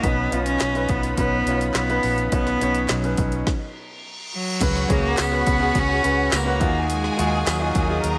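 A focused, boxy solo cello carries the melody up front in this dramatic, driving piano-driven pop excerpt at 105 BPM. An intimate grand piano with audible action noise, a very quiet, dark chamber string section, a round, foam-muted vintage electric bass and a punchy deep house drum kit with woody snare and handclaps support it until a stop at 3.5 seconds, during which an electronic reverse cymbal sounds from 3.7 seconds. A studio violin section then adds a second line from 4.6 seconds, joined briefly by a jingly tambourine in the background, all within light studio reverb.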